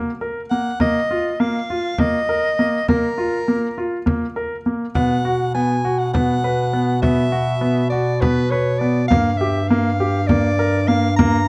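Closely miked and lightly reverberant, this short cut from a longer contemporary chamber piece moves in a pensive, restless 7/8 at 202 BPM, counted in eighths. A polished concert grand piano, with audible action noise and long sustain, plays arpeggios from the start, joined by a warm, dry frame drum and a soprano saxophone that carries a jazz-inflected melody up front with soft attack and light vibrato. At 5.0 seconds a classical-style bass clarinet enters on the bass line as the harmony moves from Ebm/Bb and Bbsus4 toward B5 and Gm7.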